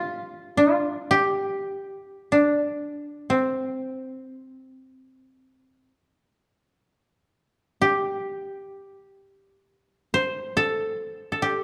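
In free time, a solo koto unfolds a calm, austere passage of Japanese traditional chamber music that lasts 11.6 seconds and is cut from a longer piece. The acoustic koto is played with fingerpicks and keeps to a compact register from C4 to C5, drawing on a G suspended pentatonic scale at standard A4 = 440 Hz tuning. Its tone is mellow and woody, with a dry, close character that places it up front. A moderate recital-hall reverb gives the plucked notes a measured sense of space around them. The overall production is dark and warm, which suits the calm, austere mood.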